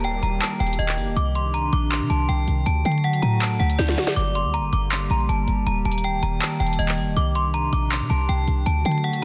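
A dense, heavily limited modern mix with light reverb opens this brooding, hard-hitting trap excerpt, taken from a longer hip hop piece at 160 BPM in 4/4 with a half-time feel. Up front, a metallic, inharmonic FM bell carries the melody high in its register, its warbling, vintage tone shaped by chorus, phaser, a low-pass filter and delay, with each note ringing into a long release. Beneath it, a hollow, flute-like pad of detuned square, triangle and sine tones holds sustained chords with a slow attack and a touch of chorus, moving through Eb, Cmadd9, D and Gm. A short, punchy 808-style bass with a sine body and a noise layer hits with a fast attack and tight decay, while an electronic trap kit of handclaps, a sharp snare and crisp hi-hats drives the groove and breaks into a drum fill from 3.8 to 4.2 seconds. A very quiet electronic downlifter sits in the background for the first 1.2 seconds.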